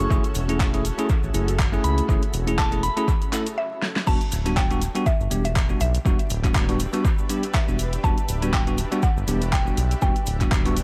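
Deep house at 121 BPM in E dorian, this warm, deep excerpt from a longer piece rides a swung 16th-note feel under an echo-heavy mix dusted with vinyl crackle. A round, dark analog bass and bell-like tine electric piano stabs both pump against the punchy, up-front electronic kick, while a cloudy granular pad drifts in the background with its own reverb. A soft, pure synth bell carries the melody over F#m7 until 3.0 seconds, and a grainy cabasa and an electronic kit with fat snare, handclaps, hi-hat and crash fill out the groove. A brief stop from 3.6 seconds brings a drum fill, then the drop lands at 4.1 seconds on Em7. Entering at 3.6 seconds, a woody, mallet-like synth pluck takes the melody through the drop, colored by chorus, phaser and dub echo.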